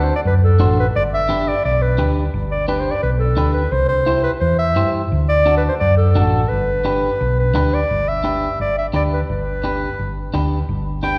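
Cumbia with a danceable, joyful spirit, this short passage is cut from a longer piece and runs in straight 4/4. A clarinet in a classical style carries the melody up front as a solo voice, its warm tone sitting between A4 and G5. Underneath, a hollow-body short-scale electric bass, played with the fingers, gives a dark, round, amped low end that also sits forward in the mix. A picked electric guitar at the edge of break-up fills out the accompaniment, sounding compressed and slightly broken-up, and it is set a little further back than the other two parts. The harmony moves from D7 to G, then through C and D before returning to G, with a new section arriving at 7.9 s. The whole performance is bathed in a wet concert hall reverb with a long, spacious tail, as though played in a church or large hall.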